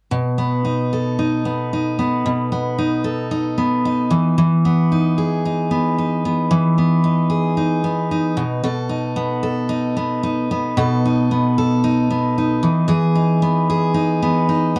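A full-bodied, up-front picked steel-string acoustic guitar carries this sunny, heartfelt pop clip on its own in a straight 4/4, moving between B7 and Emaj7 chords with a brief break at 8.4 seconds, set in a moderate studio reverb with a dark production and a faint mains hum underneath.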